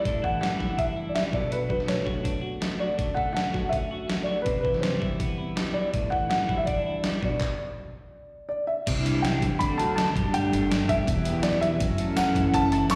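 A dark, mellow upright piano carries the melody with slapback echo and digital delay in this wistful, carefree indie rock excerpt at 163 BPM in D major. Beneath it, a compressed, clean twelve-string electric guitar and a slightly broken-up, lo-fi electric guitar through a small old amp (with analog chorus and slapback echo) play twangy riffs, while a detuned 8-bit drum machine sits up front with a thumpy kick, medium-tuned snare, hi-hat, handclaps and crash. After a stop at 7.4 seconds, a pizzicato, woody upright bass joins at 8.9 seconds and a jingly tambourine enters in the background at 12.2 seconds, all heard like a live gig through a venue PA with recital hall reverb.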